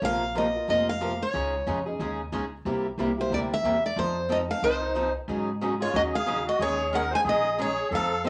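Swung eighth notes at 182 BPM in 4/4 drive this swinging, virtuosic cut of acoustic string swing in Bb minor. A bright, up-front steel-string guitar picks the melody over two boxy picked acoustic guitars, one an archtop and one swing-style, and a woody, thumpy pizzicato upright bass. Finger squeaks slip through from the lead and archtop guitars, and at 4.6 s a reedy, shimmering, close-miked musette accordion enters with a second line, the whole ensemble heard in a wet studio room.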